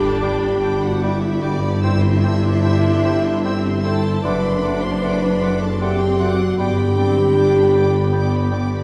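This classical excerpt is tender and warm, moving at a rubato 76 BPM in 3/4 in G major and cut from a longer piece. A lush, expressive violin section carries the melody with vibrato, while a second violin section adds a close, bowed second line with portamento, and a dark viola section fills in soft-attacked accompaniment beneath them. The French horn section sits most prominently, holding mellow sustained chords through the G, C/G and D7/F# harmony before settling back on G at 6.6 seconds. In the background, a rich cello section, a smooth double bass section and a tuba share the bass, while a very quiet concert harp plays ringing, thumb-plucked arpeggios. From 0.2 seconds, an airy, hollow silver flute, a clear oboe and a warm clarinet add gentle second lines, and a very quiet bassoon joins the accompaniment. The whole ensemble is heard from further back in a concert hall with wet reverb.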